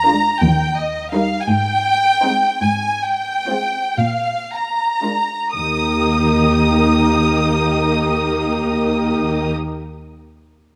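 A close, up-front violin section carries the tender, lyrical melody high in its range, its warm, expressive vibrato leading this slow romantic movement for string orchestra in Eb major. Beneath it, a woody cello section holds the bass from the first moment, also up front, while a dark viola section fills the middle with smooth, even accompaniment and a second violin line with a soft attack adds a gentle inner voice from 0.1 seconds. The 6/8 pulse moves freely in rubato at roughly 37-58 BPM counted in dotted quarters, and the opening phrase slows down through its first 5.6 seconds. The harmony passes from Eb through Abmaj7 to Bb7 before settling back on Eb as a new section begins at 5.6 seconds. A moderate scoring-stage reverb surrounds the bowed ensemble, captured with close, detailed microphones, and the passage is cut from a longer piece.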